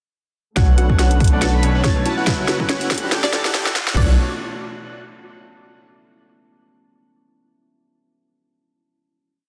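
A short, bittersweet future bass piece in B minor opens at 0.6 seconds with nearly its full arrangement at once, moving at 141 BPM in a half-time 4/4 feel with a light swing on the sixteenths. A punchy, layered electronic kick and an overdriven trap kit with a sharp snare, bright hats, hat rolls and crash drive a build-up with a drum fill, while a deep, saturated sine sub bass holds long gliding notes under a Bm9, F#7sus4 and Em11 progression. Huge detuned supersaw chords pulse in gated patterns through a filter sweep. A punchy sawtooth pluck repeats a riff melody in octaves with tape echo, and a polished grand piano plays dotted-rhythm chords through digital delay; all three pump against the kick. Above them, an airy, dreamy lead with chorus and vibrato doubles the chords an octave higher. Lower down, a fingerpicked concert harp rings out a sixteen-step arpeggio, and a very quiet chamber string section adds a reedy, gut-string pad with light vibrato. 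A faint riser enters at 2.2 seconds, and the build resolves at 4.0 seconds onto a final Bm9 chord, all set in a lush hall reverb within a dense, heavily limited modern master.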